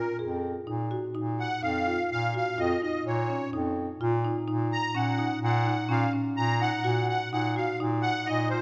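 Hypnotic and restless, this short excerpt of contemporary chamber music in 7/4 at 126 BPM in Bb minor sets a reedy, shimmering musette accordion melody up front over woody rosewood marimba arpeggios and a warm, roomy bass clarinet line, all heard in a wet concert hall, with the harmony moving to Ebm/Bb at 4.5 seconds.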